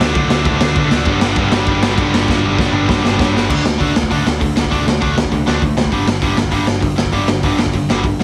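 A dry, heavily compressed radio sound frames this upbeat, energetic punk rock fragment, where a gritty, up-front garage drum kit with a punchy kick and dark cymbals sits under a bright, overdriven electric guitar riff and a round, foam-muted bass, while a scooped high-gain guitar plays in the background until 3.5 seconds, a second distorted guitar joins at 1.1 seconds, and a drum fill at 2.3 seconds carries the music into its next section.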